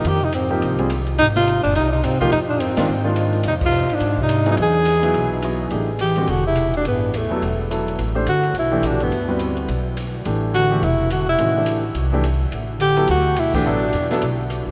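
Modal jazz at a brisk 212 BPM with an intense yet cool swing, as an up-front, close-miked tenor saxophone carries the melody with soft-attack vibrato over a mellow bass clarinet second line in the background, polished grand piano accompaniment, growly pizzicato upright bass and a dark, boomy jazz kit, all bathed in a huge, echoing reverb, with the key moving from F dorian to A dorian at 5.7 seconds and band accents at 3.6 and 13.5 seconds in this fragment of a longer piece.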